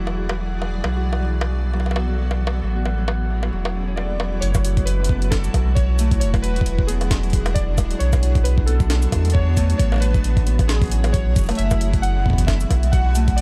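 This IDM excerpt opens with a blurred, granular cloud pad holding sustained chords in F# minor, steeped in its own reverb and a vintage 12-bit sampler grit. A fingerpicked Celtic harp rings out arpeggios beneath it, trailed by dub echo, while a deep, round sub bass sits up front. From 0.1 seconds a gritty, pitched-up jungle sampler-style kit of bongos, hi-hat, shaker and a medium-tuned snare sets a 134 BPM groove with a light swing on the sixteenths. At 4.0 seconds warbly, nostalgic lo-fi synth keys carry the melody through chorus and dub echo, and a thumpy, compressed electronic kick joins at 4.5 seconds as the chords cycle through F#m7, E7, Bm7 and Amaj7. The mood is intricate and cerebral, with a dark, warm production that keeps the room dry.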